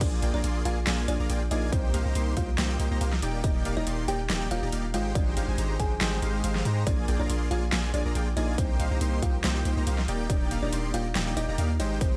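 A swung half-time future bass groove in 4/4 drives this playful, bright excerpt, where a punchy electronic kick and a big-room dance kit with a huge snare, metallic hi-hats and crash cymbal sit under a deep, mellow 808-style bass. A thick, detuned supersaw riff and a woody, hollow kalimba melody with tape echo also play, and the bass, supersaw and kalimba all pump with the sidechain over a dry mix that moves from Bb7 through Cm7, Ebmaj7 and Abmaj7.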